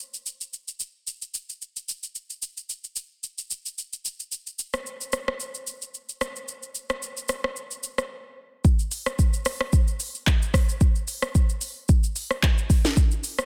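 This amapiano piece carries a warm, soulful mood at 111 BPM in 4/4, with a 55% swing on the sixteenths giving the groove its relaxed lilt. An electronic, produced afro-pop drum kit enters at 0.1 seconds and sits up front, combining handclaps, hi-hat, kick drum, rim click, shaker and snare drum. The deep kick anchors the pulse while the sharp snare, roughened by soft clipping, cuts through above the smooth hats. After a brief break at 8.1 seconds, the drop arrives at 8.6 seconds and carries the groove to the close of this section cut from a longer piece. The sound is dry and close, with a dense, heavily limited modern master.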